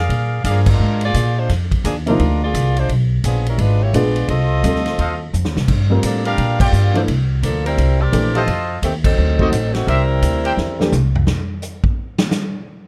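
Brassy and joyful, this big band swing excerpt opens with a short trumpet stab over woody pizzicato upright bass and a punchy, natural drum kit. The saxophone section carries the melody with clear vibrato, while an intimate baby grand with audible action noise joins at 2.1 seconds and the trumpets return with stabs from 5.0 seconds, with band accents punctuating the line. After drum fills, the kit takes a brief solo from 11.3 seconds in a dark production with light reverb.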